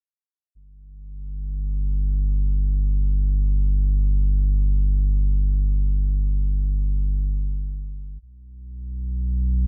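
Free-floating and unmeasured, this ambient fragment drifts along in free time with a serene calm. A sub bass carries it alone, entering at 0.5 seconds and holding until 9.7 seconds, its notes sitting deep in the low register. The tone is round and pure, close to a sine wave, with a fast attack that settles into long, sustained notes. Placed up front in a dry space with little reverb, the bass feels intimate and present. The result is a gentle, warm bed of low sound, clearly lifted from a longer piece.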